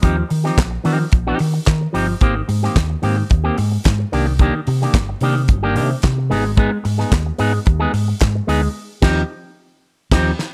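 Glamorous and joyful, this disco excerpt features a bright, twangy picked electric guitar through an envelope filter, a round, hollow-body fingered electric bass, and a damped 70s drum kit with a fat snare, tight kick, dark cymbals and handclaps, moving through lush chords like Eb69, Abmaj9 and Cm9 before a band accent at 8.8 seconds.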